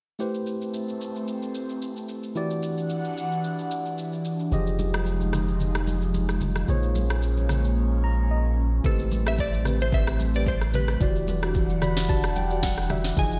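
A soulful, hypnotic amapiano groove at 111 BPM opens with a worn, slightly out-of-tune electric piano, an airy pad softened by chorus and phaser, and a produced electronic drum kit with a deep kick, sharp snare, rim click and shaker, laid out over Am9 and Em9 chords with a gentle 16th-note swing. At 4.5 s a punchy sine sub bass arrives up front with a pitch-drop attack, joined by bright, thin-skinned congas sitting in the background as the harmony moves to Fm9 and Bbm9. The drums drop out at 7.8 s while the electric piano plays a fill, and the kit returns at 8.8 s. There a woody, buzzing marimba adds soft-mallet stabs through tape echo, and a round FM synth pluck takes the melody, also with chorus and tape echo. The electric piano plays a further fill near the close, and the whole passage sits in a dreamy, reverb-soaked hall ambience.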